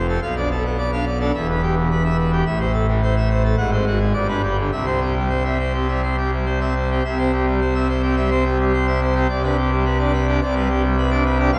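A dark production bathes this clip, cut from a longer classical organ toccata, in a wet church reverb with a 3.0-second decay, while the solo pipe organ stands up front on full organ with mixtures, spanning E1 to Gb5 in a romantic voicing. In C major at 107 BPM in a straight 4/4, tuned to A4 = 435 Hz, the mood is jubilant and majestic. Its harmony moves from Bm7b5 through Em, Am and Ab7 to G and C by 4.7 seconds, with the opening phrase returning at 7.0 seconds and settling on G/C at 9.3 seconds.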